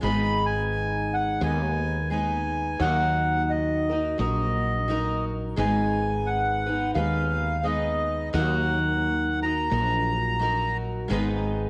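Reflective and intimate, this short acoustic folk clip in a lilting swung 4/4 pairs a reedy accordion melody, which drops out at 10.8 seconds, with a shimmering, octave-doubled fingerpicked twelve-string guitar and a growly fretless electric bass touched with ensemble chorus, all set close in a moderate echo-chamber reverb as the harmony sways between G#m and D#m.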